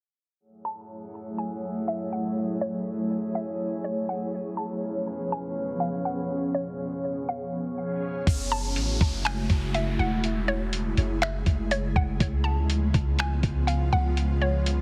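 A half-time 4/4 pulse at 122 BPM anchors this hazy, ethereal cloud-rap excerpt in F# minor, where an airy, detuned pad sustaining F#m9 and C#7 chords pumps under a filter sweep, a glassy harmonics texture drifts until 8.3 s, and a hollow, bouncy square pluck carries the melody through chorus and delay, until at 8.3 s a muffled, pitched-down sampler kit of finger snaps, hi-hat and thumpy kick arrives with a deep, boomy 808 bass and a brief electronic downlifter, all heard through a heavily compressed, low-passed radio sound with light reverb.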